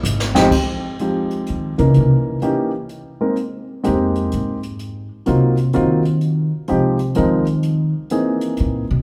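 Jazz piano trio in a smoky, swinging 3/4 at 126 BPM in F minor, cut from a longer piece, opening with a short brush drum fill before an upright bass solo takes over from 0.5 seconds. The pizzicato bass is woody and dark with steel strings, sitting up front beside a warm concert grand piano with deep bass and short sustain, while the brushed kit adds dark cymbals, a medium-tuned snare and a boomy kick at a lower level. A recital-hall reverb with a 1.9-second tail wraps the group in a church-like space as the harmony moves from Fm9 through Abmaj7 to a closing C7alt.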